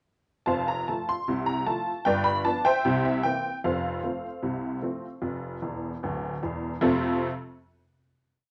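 Through the warbling haze of worn cassette tape and light reverb, a detuned, jangly honky-tonk upright piano sits up front, playing a playful, jaunty ragtime piece in F major at 76 BPM in 2/4, with a tune over chords and stride bass moving from F through G7 and C7 back to F, a fill at 5.6 seconds and a final chord at 6.8 seconds.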